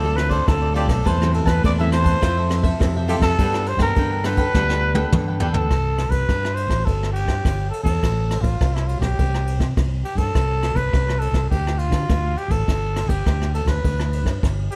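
A straight 4/4 groove drives this festive, lively samba and choro piece, built on a jazz brush kit with dark cymbals and a boomy kick sitting up front beside a growly, amped fingered electric bass. A raspy, growling trumpet carries the jazz-style solo melody with vibrato and scooped notes. A crisp picked cavaquinho and a full-bodied, fingerpicked nylon-string guitar with audible finger squeak accompany until 5.7 seconds, where a drum fill beginning at 4.5 seconds closes the opening section, and light reverb adds a touch of space.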